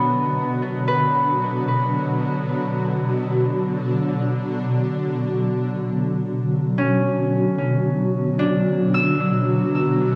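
Awash in a cathedral-deep reverb and the warbling pitch drift of a worn old cassette, this reflective, melancholic ambient fragment in B minor drifts at 56 BPM, as a dark, ethereal pad with chorus and octave-up shimmer holds a sustained Bmadd9 chord beneath ringing, fingerpicked concert harp arpeggios touched with tape echo, both parts sitting up front from 0.0 to 10.2 seconds.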